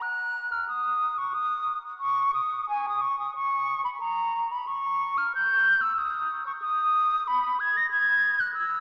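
The recording carries the long, lingering wash of a cathedral, heard from farther back in the room with a small-speaker quality, and the flute still sits up front within that resonant space. This is a short cut from a longer classical piece, a baroque-style fantasia for unaccompanied concert flute in an introspective, flowing mood. The flute plays alone throughout the full 8.8 seconds, staying high in its register, between Ab5 and A#6. Its tone is pure and expressive, shaded with vibrato and soft attacks, and the rubato feel lets each phrase breathe freely. At 5.3 seconds the music shifts to a new tonal center, giving the brief passage a fresh turn before it is cut off.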